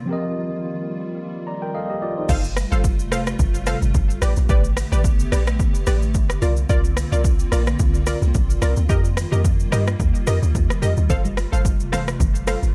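Soulful and late-night, this amapiano cut at 109 BPM in G minor opens with a break where a clean, up-front tine electric piano and a hollow, flute-like soft pad with ensemble chorus and sidechain pumping carry sus4 chords, the piano playing a fill before it stops at 2.4 seconds. At 2.3 seconds the drop lands with a deep, round log drum bass, an overdriven deep house kit with a punchy kick, rim click, shaker, hi-hat and crash, and sawtooth chord stabs treated with chorus and tape echo. Bright, close congas sit in the background from 11.1 seconds, all in a dry, up-front mix.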